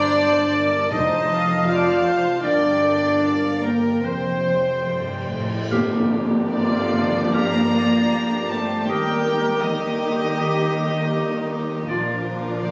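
Loosely felt in 4/4 and played rubato, this sorrowful, moving passage of cinematic film score is cut from a longer orchestral piece. A rich chamber violin section carries the melody with soft, floating sul tasto bowing, while a bright, distant oboe, a close-miked clarinet and a symphonic violin section play second lines. Dark violas with lush vibrato and an intimate chamber cello section sit in the background over a pure-toned symphonic double bass section, and a tight French horn section holds sustained chords. Very quiet timpani come in at 0.9 s, a cymbal swell and tam-tam add bright color in the background, and the ensemble strikes an accent at 5.7 s before a small, airy flute group joins at 6.5 s. A wet scoring-stage reverb surrounds the orchestra, while the phone capture in the room, club reverb and compression give the whole a somewhat crowded, less polished sound.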